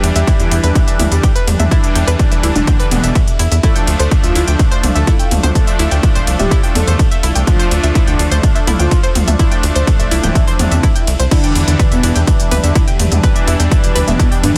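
A straight 4/4 pulse at 125 BPM drives this hypnotic, dramatic melodic techno in E phrygian: a heavy, tape-warm electronic kick sits up front beside a tight, punchy sequencer bass and a techno drum kit of smooth hats, crash, ride and toms, while round analog pluck arpeggios carrying 12-bit grit and delay, bold brassy analog pad stabs and a morphing wavetable pad with phaser pump to the sidechain, and a dark synth brass melody sits over a very quiet supersaw second line through Em7 and Dm, before a faint swell at 10.6 s and a nasal analog drone entering at 12.9 s round out the dense, heavily limited, dry master.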